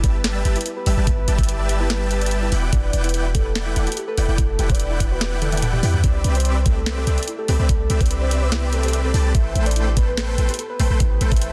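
Opening at 0.0 s, this playful, lush future bass passage at 145 BPM in half-time pairs a knocking, up-front electronic kick and a trap kit of sharp snare, bright hats and toms, with a fill from 5.4 to 6.0 s, against a deep, boomy 808-style bass, a huge detuned supersaw riff, a full, round octave-layered synth lead carrying the melody through chorus, phaser and tape echo, and a gentle filter pluck tracing background arpeggios. The bass, supersaw, lead and pluck all pump to the sidechain over G6, Em9, Cmaj9 and Am9 chords in a dry, dense, heavily limited master.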